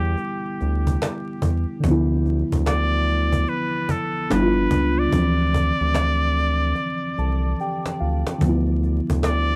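This nostalgic, reflective lo-fi hip hop fragment, cut from a longer piece, opens with a trumpet in a straight mute carrying the melody over felt-like synth keys and a round analog bass, with a cajon joining at 0.2 s. The trumpet sits up front as a solo voice with a bright, nasal, jazz-style tone, vibrato and a smooth top, softened by a low-pass filter, plate reverb and tape echo. Beneath it, the keys are intimate and full-bodied, with a dark, decaying character, a filter sweep and a chorus sheen. The bass is deep and sustained, also sitting up front. The woody, compressed cajon carries faint snares and a saturated edge in a swung groove, and at 6.8 s both the cajon and the keys play fills that lead into a return of the opening material at 8.4 s, all framed by a small room ambience and vinyl crackle.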